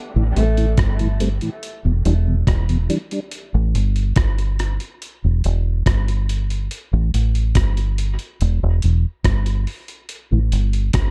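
Hypnotic and deep, this dub reggae excerpt rides on a dark, round fingered electric bass that sits up front from 0.2 seconds to the end, joined at 0.4 seconds by a dusty, compressed sampler-style drum kit of hi-hat, thumpy kick and rim click with a gritty edge. A mellow tonewheel organ with chorus vibrato and a slow rotary speaker colours the opening chords before dropping away at 3.2 seconds, returning only for a brief touch near the end, while a breathy, whispered tenor saxophone drifts through a single soft note bathed in dub echo. The dark production keeps the sound dry and close, moving through minor-seventh and suspended harmonies with a short stretch of bare groove after the opening chords.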